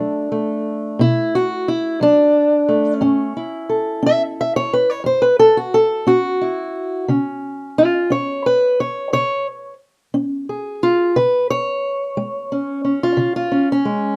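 Set in light reverb, a dark, boxy parlour-sized steel-string acoustic guitar sits up front, fingerpicked alone for the full 14.2 seconds of this short cut from a longer country blues piece. The mood is brooding and smoky, with a slow, straight 12/8 feel moving from Bm7 to F#m7 and on to C#. Finger squeak on the strings adds an intimate, close-up touch as the part ranges from F#2 to E5.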